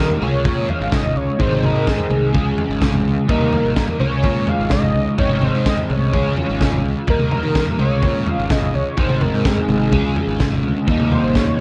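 Kaleidoscopic and trippy, this short psychedelic rock excerpt cycles through a Db, Ab, Db, Eb progression as a thick, detuned sawtooth unison lead with a sub octave carries the melody through analog delay, a bright, double-tracked overdriven guitar drives the riff through a rotary speaker up front, a round, punchy fuzz bass sits in the background, and a gritty, saturated breakbeat kit with a tight kick, high-tuned snare and toms pushes forward under light reverb.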